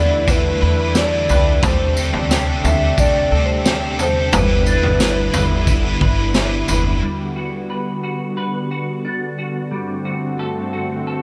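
Dream pop in G major at 89 BPM, ethereal and floating, this excerpt opens with a warbling square-and-sawtooth lead carrying the melody over crunchy overdriven guitar, a woody pizzicato upright bass and a very quiet crystalline FM bell, while a gritty, saturated garage drum kit with a boomy kick and high-tuned snare sits up front from 0.3 seconds. A detuned sawtooth pad with chorus and tremolo and a clean hollow-body electric guitar picking arpeggios through chorus and digital delay hold on to 11.2 seconds after the other parts have all dropped out by 7.0 seconds, leaving the two to drift through Gmaj7 and D7/G. Light reverb softens the mix, and the whole piece sits slightly off standard pitch at A4 = 439 Hz.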